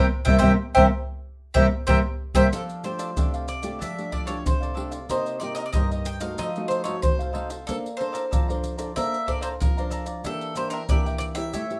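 A bright, picked bowl-back mandolin with its double strings carries the melody up front in this joyful, lively samba and choro excerpt, set in F major at 93 BPM in a straight 4/4. Crisp cavaquinho accompaniment sparkles beside it, while a full-bodied, fingerpicked classical nylon-string guitar fills in chords from the background, finger squeaks audible on the strings. A second fingerpicked nylon-string guitar holds down the bass only for the opening 2.5 seconds, during a band accent that a drum fill caps from 1.6 seconds. Surdo, maracas and pandeiro enter at 0.3 seconds, sitting close, dry and up front with a tight surdo thump. The harmony moves from C7 into a jazzy run of F69, Cm7, F7b9, Bbmaj9 and Em7b5, all in a moderate studio reverb that gives the acoustic ensemble a lively, intimate sound.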